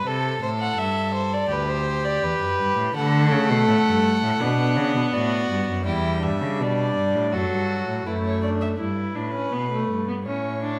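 Classical baroque-style fugue for string quartet in G major at 82 BPM, contemplative and solemn, in which a nasal, airy-bowed period-style violin carries the melody over a second violin's gut-string line that drops out at 8.8 s, a reedy, close cello anchors the bass, and a rich, distant viola with light vibrato joins the accompaniment at 3.0 s, the whole brief passage cut from a longer piece and set in a recital hall's lingering reverb.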